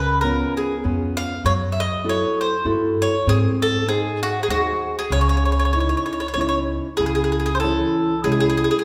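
Italian folk serenade in C# harmonic minor, romantic and passionate, flowing at 97 BPM in a lilting, rubato 3/4 with a light swing, where an up-front, round-toned picked mandolin on doubled strings carries the melody over a small, fingerpicked nylon-string guitar with audible finger squeaks and a woody pizzicato upright bass, until a bright, classical-style clarinet slips in behind them at 7.0 seconds, all bathed in the lush reverb of a church or concert hall in this brief cut from a longer piece.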